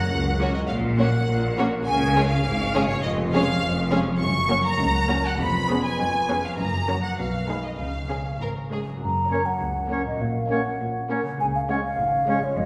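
Cinematic film cue, playful and whimsical, with a magical, quirky mood in a straight two-beat metre, cut from a longer piece. A rich, focused violin section carries the vibrato-laden melody up front, while a ringing, fingerpicked concert harp spins arpeggios beneath it from the first moment. Second violins sing a smooth, even line in the background, violas add close accompaniment, and a cello section and a double bass section anchor the bass from a distance. The same phrase starts again at 9.0 seconds, when a mellow, hollow concert flute steps forward with a pure second line. From 9.3 seconds a bright oboe, a clarinet, a dark, very quiet bassoon and a loose French horn section sustaining soft chords fill out the texture. A wet scoring-stage reverb places the ensemble further back in the room, giving the cue a spacious, storybook glow.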